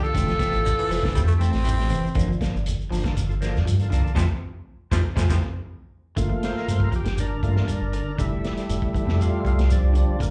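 Afrobeat with a defiant, intense drive, caught live through a club PA. A subtoned tenor saxophone melody and a gritty second tenor open the piece and drop out by 1.5 seconds, while a raspy, close-miked baritone saxophone line and clean stabs from a hollow-body guitar carry on until about 5.4 seconds, with a band accent landing from 4.2 to 6.2 seconds. Underneath, a round sub bass, a punchy vintage drum kit, a grainy shekere and twangy, slightly broken-up guitar arpeggios hold steady, and a thick, lightly overdriven tonewheel organ with key click and slow rotary shimmer steps out for a solo from 6.2 seconds.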